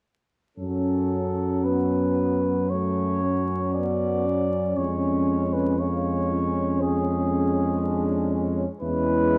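In a slow, rubato 4/4 at 58 BPM, this elegiac, melancholic brass band excerpt moves hymn-like through F# minor, from F#m toward C#/E# and C#m/E, with every part sounding together from 0.6 to 9.4 seconds. A punchy, distant flugelhorn carries the melody up front over a smooth-topped, mellow tuba bass. Behind them, a dark, softly attacked French horn section holds a second line with light vibrato, while a clear trombone section and a roomy solo trombone supply background accompaniment, all set in a moderate scoring stage reverb under a layer of vinyl crackle.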